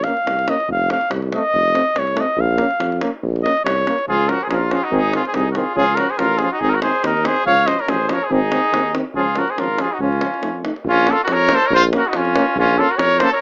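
Balkan brass band folk at 142 BPM in a swung 2/4, virtuosic and bittersweet, opening in Bb harmonic minor with a mellow cornet solo up front over a dark euphonium, a clear, close-miked trombone, a tuba bass line and a deep davul. At 4.1 seconds the music turns to Db major, and a trumpet with vibrato joins on a second line, up front yet distant and roomy. The excerpt has the rough feel of a home demo, with light reverb and a small-speaker sound.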